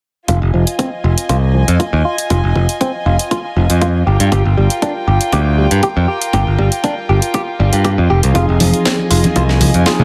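A growly, up-front picked electric bass with tube saturation drives this cosmic, sleek nu-disco passage in F minor at 119 BPM, moving from Fm7 to Gm7 and back over a punchy electronic kick and a house kit with cracking snare and hi-hat, both tape-warm and re-recorded in a large room. A clean, compressed electric guitar riff runs through analog chorus, 12-bit sampler grit, tape echo and a filter sweep, while a soft-attack, floating violin section holds sustained chords with sidechain pumping. A barky tine electric piano enters at 8.3 seconds and hard-handed congas at 8.6 seconds, sitting in a lightly reverberant, echo-heavy mix cut from a longer piece.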